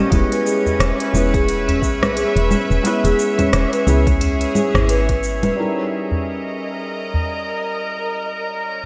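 A 4/4 groove at 88 BPM with a 58% swing on the sixteenths drives this earthy, meditative piece of organic downtempo in Eb phrygian dominant, tuned to A4 = 436 Hz. An overdriven electronic kick with a deep, re-recorded large-room character and an organic electronic kit of congas, smooth hi-hat, rim click and shaker, darkened by low-pass filtering and gated reverb, anchor the pulse. A small, close and dry udu adds acoustic percussion from 0.7 s. A soft, round FM bass with a woody, decaying tone and a marimba played with medium mallets, its arpeggios touched by digital delay, carry the first part over a Dbm7/Fb chord before dropping away around 5.6 s, when the harmony moves to Eb7b9. Throughout, a thick-felt muted upright piano with audible action noise gives intimate, mellow accompaniment with subtle chorus, delay and sidechain pumping, while a tense, detuned, string-like sawtooth drone with vibrato sustains chords alongside it. 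High above, a faint, glassy sine texture with drifting overtones floats calmly, and the whole is set in a moderate plate reverb with a bright 1980s-style digital production sheen.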